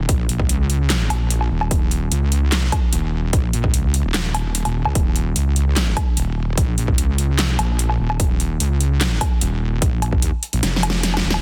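A detuned, saturated wobble bass opens this chaotic, menacing slice of heavy wobble dubstep, wobbling between Eb1 and Eb2 with chorus and overdrive at 148 BPM in a half-time 4/4 feel. A punchy electronic kick and a big-room dance kit of huge snare, metallic hi-hats, handclaps and woodblock arrive at 0.1 seconds, with the kick dropping out at 10.2 seconds before a drum fill closes the passage from 10.6 seconds. The sound is dry, dense and heavily limited, with the bass and drums pushed up front.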